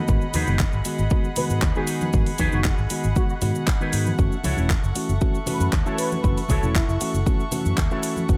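A mellow, clean tine electric piano and a smooth, gut-toned violin section open this short nu-disco excerpt together, the strings bowing sustained chords with light vibrato under a sidechain pump while the piano's accompaniment trails tape echo. Almost at once a punchy, up-front electronic kick and a house kit of handclaps, hi-hat and shaker set a straight 117 BPM groove, joined by a bright, amped fingered bass pushed through an envelope filter and distant, very quiet congas. From the very start, an electric guitar, twangy and scooped with its own envelope filter, plays a picked riff coated in analog chorus and tape echo. From 1.4 s to 7.0 s a thick, nasal, detuned unison lead carries the melody from the background, its sawtooth edge carrying vibrato, ensemble chorus and echo. The harmony moves from G#m7 to F#m7 at 4.2 s in F# dorian, giving the cut a cosmic, sleek mood, and the dry mix keeps the tape-warm kick up front.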